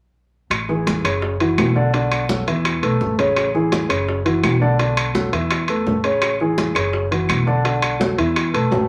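An up-front grand piano accompanies this festive, sunny salsa excerpt, cycling through Amaj7, F#5, Bm7 and Esus4 over a dark, thumpy pizzicato upright bass on gut strings, while ringing metal-shell timbales, thick-skinned, high-tuned congas struck with hard hands in the background, very quiet round, low-tuned bongos with a compressed, saturated tone, and distant, woody claves fill out the percussion inside a wet club reverb with a faint mains hum.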